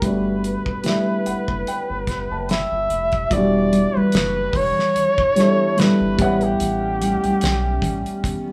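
R&B and neo-soul at a slow 73 BPM in E dorian, this soulful, introspective excerpt sets an up-front flugelhorn melody with vibrato over a dark, woody upright piano that adds a fill from 0.8 seconds, a round analog bass, and a damped 70s drum kit with a fat snare, before a hollow, detuned pad with chorus and bright, soft-handed congas join in the background at 3.3 seconds as the chords move from Gmaj9 to Em9 and A13, all in a moderate room reverb that sounds like a band playing live together.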